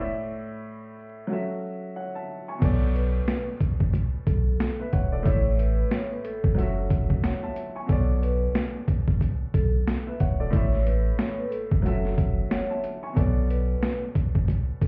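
A gritty, overdriven sampler-style drum kit sits up front in this dark boom-bap hip-hop excerpt, with a thumpy kick, a high-tuned snare, hi-hat and crash that sound compressed, pitched down and re-recorded in a large room. Before the drums arrive, a woody, vintage upright piano opens alone as a short break, its smooth, short-sustained chords filtered at both ends. At 2.6 seconds the drums and a deep, round dub sub bass enter together, the bass soft yet up front with a fast attack and sustained low notes. From 3.0 seconds a soft-mallet vibraphone carries a compact, mellow melody, metallic and ringing with a slow motor vibrato, a filtered tone and a tape echo trailing behind it. The swung groove cycles through a moody minor-leaning progression of A, F#m7 and Bm7, while the whole mix sounds muffled as if heard through a wall, with a touch of club reverb and a bed of vinyl crackle.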